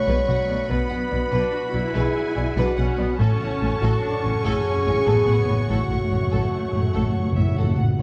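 A dark scoring-stage sound with moderate reverb frames this dramatic, heroic cinematic orchestral fragment at 96 BPM in 12/8 in F# minor, where lush, vibrato-laden violins carry a distant melody over a second violin line, focused violas supply accompaniment, mellow French horns and warm woodwinds hold sustained chords, smooth cellos and double basses anchor the bass, and close, dry hard-mallet timpani enter at 3.2 s with a fill as the harmony moves from Bm to F#m/A.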